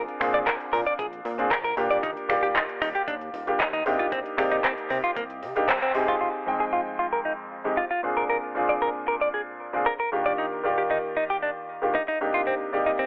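The recording has a dry, gritty, telephone-like character with light reverb, and it is cut from a longer nu-disco piece in F dorian at 115 BPM in a straight 4/4. The mood is cosmic and sensual. A smooth, deep-bodied concert grand piano carries the chords up front with sidechain pumping and analog delay, moving through Bb7, Ebmaj7 and Cm7, then Fm7, Bb7, Ebmaj7 and Cm7 again. Beside it, a compressed, clean electric guitar recorded direct plays a picked riff with subtle chorus, a low-pass filter and analog delay. In the opening part, a retro, glossy chorused synth bass with a plucky pulse-wave bite pumps underneath, joined by a tape-tinged pop kit of finger snaps, handclaps and crisp, filtered hi-hats, with a knocking electronic kick in the background. After a band accent at 5.7 seconds, the bass and drums drop out, and from 6.2 seconds a filter sweep on the guitar shapes the piano-and-guitar passage that runs to the end.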